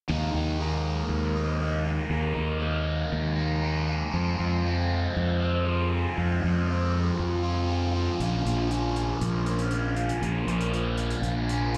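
Restless and cool, this indie rock fragment is heard as a live club performance through the venue's PA, with little reverb on it. A bright, overdriven garage guitar riff, double-tracked and up front with phaser and slapback echo, rides over a growly fuzz bass, moving from Ebsus4 through Fm to Bbm. A muffled, gritty hi-hat with a rolled-off top joins quietly at 8.2 seconds.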